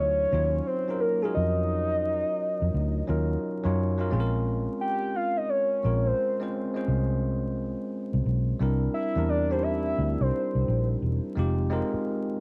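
A swung sixteenth-note groove at 87 BPM in 4/4 carries this introspective, soulful neo-soul R&B cut from a longer piece, tuned to A4 = 439 Hz. A soft, octave-layered synth lead takes the solo from the start, sounding until 10.9 s, its full-bodied sine-and-triangle tone, sub-octave weight and fast attack colored by chorus, phaser, vibrato, cassette tape and plate reverb. Beneath it, a bell-like tine electric piano plays bright, clean accompaniment through 12.4 s, also given cassette tape and plate reverb. A vintage muted, fingered electric bass sits up front with a dark, punchy, foam-muted sound until 12.0 s. The harmony moves through Ebm9, Bbm9 and C7 before settling on Fm9 at 11.3 s, all in a moderate booth ambience of a home cassette recording dusted with vinyl crackle.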